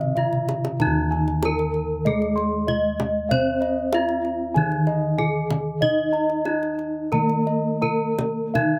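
This is a serene, shimmering Javanese gamelan passage in Eb pelog barang, moving at 80-96 BPM in a straight 4/4, cut from a longer piece. The melody sits on a bronze metallophone struck with a horn mallet, bright and ringing, with paired tuning that produces shimmering beats; it sounds airy and up front, touched by a slapback echo. Beneath it, a second metallophone carries the accompaniment with padded disc mallets, giving a mellow, soft, warm tone framed by a boxy small-room character. Bossed gongs play round, beating arpeggios in the upper register, also bright and set with slapback echo, while lower bossed gongs supply an open, forward bass line. The kendang, tight and compressed with a saturated edge and hard-handed strokes, opens with a drum fill from 0.3 to 0.8 seconds before the main section settles in at 0.8 seconds. The whole ensemble was captured outdoors with little reverb, so the bronze tones ring clearly in open air.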